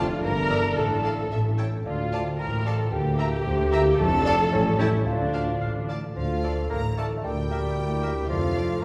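Heard from further back in a recital hall with a wet reverb, this short cinematic cue in D minor moves at 112 BPM in a straight 2/4, its mood sneaky and quirky. A very quiet, bell-like celesta with hard felt hammers carries the melody alongside a dark, woody violin section set in the background, which drops out at 8.6 seconds while the rest continue to 8.8 seconds. Second lines come from an airy silver concert flute, a mellow oboe with light vibrato, a clear close-miked clarinet and a smooth, close violin section. A lush viola section sits up front with a vintage-toned bassoon in the accompaniment, while a punchy French horn section holds sustained chords and a ringing, fingerpicked concert harp spreads arpeggios from F2 to E6. The bass is shared by a mellow tuba, a focused double bass section and a very quiet cello section, under diminished and dominant chords that keep pulling back to D minor.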